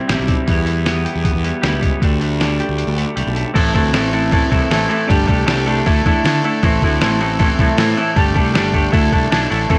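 Upbeat and carefree, this indie rock excerpt at 156 BPM pairs two picked overdriven electric guitars, one crunchy with analog chorus and one raw and lo-fi, with an up-front fuzz bass and a muffled, pitched-down sampler-style drum kit with a thumpy kick, moving from Em and Dsus4 through a break at 2.8 seconds into an Am, Gsus2, Dsus2 cycle, all with a dry, cassette-recorded home sound.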